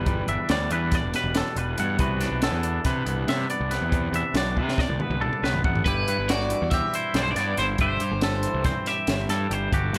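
Lightly reverberant and cut from a longer piece, this wistful, intricate math rock and midwest emo passage in 9/8 sets two clean, twangy electric guitars (one compressed and accompanying through harmonic tremolo, the other playing tape-echoed arpeggios in the background) over a round, punchy fuzz bass and a dark, smooth compact cocktail kit with a high-tuned snare, and after a drum fill leading into 5.9 s, an overdriven hollow-body guitar carries a phased, echoed melody until 8.6 s as the chords move from Em7 and Cmaj9#11 to Cmaj7/G and Am7/G.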